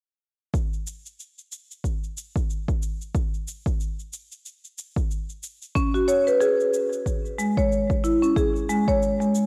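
Organic downtempo with a warm, meditative mood and a gently swung 4/4 feel, cut from a longer piece. A punchy, up-front electronic kick and a layered, produced shaker run from 0.5 seconds, both coloured by studio reverb and cassette tape. At 5.8 seconds a woody marimba with medium mallets enters up front with arpeggios, roughened by 12-bit sampler grit and tape echo, all set in a lush hall reverb with the soft character of a home cassette recording.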